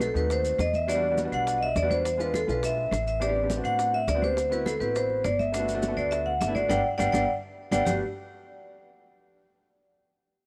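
A brisk, straight 4/4 groove at 206 BPM drives this danceable, sophisticated Afro-Cuban jazz excerpt in G major, with damped, thick-skinned congas, tight high-tuned bongos and distant woody claves tucked into the background, joined by grainy, mellow maracas. Up front, a ringing, metallic vibraphone with its motor off carries the melody, while a warm baby grand piano supplies accompaniment over extended chords running from a rootless B7b9 through Em9, Am11 and D13 to Gmaj9, and a thumpy pizzicato upright bass anchors the low end. A drum fill and band accent land together from 6.7 to 7.9 seconds, all set in light, small-room ambience.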